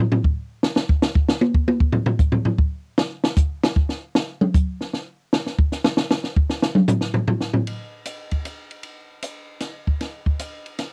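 Hypnotic and cool, this swung jazz waltz fragment from a longer piece features a dry, up-front compact cocktail drum kit with a high-tuned snare, tight kick, hi-hat, ride cymbal and toms. The kit plays a solo until 7.7 seconds and continues into a new section until 10.9 seconds, captured as a home cassette recording in a booth with moderate ambience.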